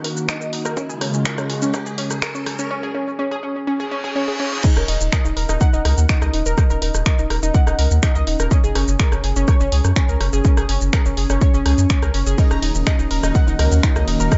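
Melodic techno at 124 BPM in Eb minor, hypnotic and driving, where a warbling, detuned analog pluck arpeggio with tape echo and sidechain pumping sweeps through a filter over brief chorused pad chords alternating Ebm and Gbadd9, while a background riser and reverse cymbal build toward the drop at 4.6 seconds; a round analog bass then enters at 4.8 seconds beneath the punchy, overdriven kick and a tape-warm deep house kit of snaps, rim clicks, shaker, hi-hat, ride and crash steeped in dub echo, as a very quiet, wave-folded dark ambient pad sustains underneath.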